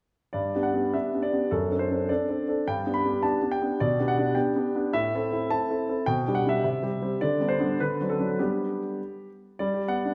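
Playful and cheerful, this short passage cut from a longer classical-period piano sonatina features a polished, up-front solo grand piano in flexible rubato 2/4 time, heard from 0.3 to 10.1 seconds within the wet bloom of a recital hall.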